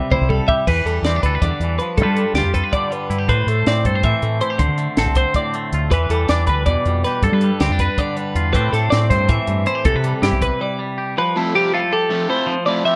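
Wistful and intricate, this math rock and midwest emo cut moves at 320 BPM in 7/8, opening on a drum fill from a compact cocktail kit with a high-tuned snare and punchy kick before a bright, twangy electric guitar with spring reverb and a bright twelve-string playing arpeggios through a vibrato effect sit up front over a growling, overdriven fingered bass. The chords cycle through jazzy sevenths from Cmaj7 to Am7 and back, and after a break at 10.6 seconds the bass and drums drop away as a dark, double-tracked semi-hollow guitar enters at 11.4 seconds with an overdriven riff over Fmaj9. The rough home demo mix is dry, and the drums sound smooth and rolled-off.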